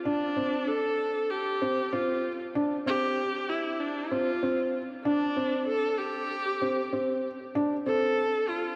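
A straight 4/4 pulse at 96 BPM carries this hypnotic, intimate electronica piece in D minor, cut from a longer work and tuned to A4 = 439 Hz, where a dark, woody upright piano riff enters at 0.1 seconds beneath a rich, bowed solo viola melody with focused vibrato, both sitting up front with delay, inside a dreamy mix soaked in a wet plate reverb.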